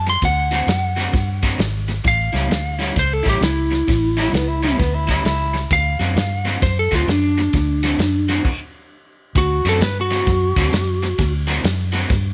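Electric blues shuffle with a rollicking, soulful swing, heard in a short clip cut from a longer piece. A slightly broken-up, compressed lead guitar carries the melody up front over D7 and A7 changes, while a round, foam-muted fingered bass sits dark and close beneath it. A raw garage guitar plays an overdriven, picked riff colored by harmonic tremolo, and a soul drum kit with a fat snare, tight kick and dark, rolled-off cymbals pumps in a snug booth. Around 4.2 s a raspy, growling tenor saxophone slips in briefly with a gritty, vibrato-laden jazz line. After a stop at 8.5 s, the lead guitar launches into a solo at 9.4 s, all set in light reverb and small room ambience.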